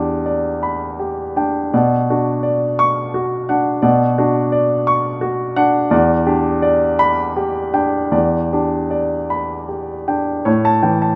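A polished, up-front grand piano plays alone in this brief 11.2-second excerpt of neoclassical minimalist music, moving in a rubato 6/8 at roughly 51-58 BPM and spanning E2 to C#6. Its intimate, melancholic harmony drifts from Em7 to Bmadd9 and back to Em7, reaching A7 at 10.5 seconds, while the close, present tone sits inside a moderate plate reverb with a long 3.4-second tail.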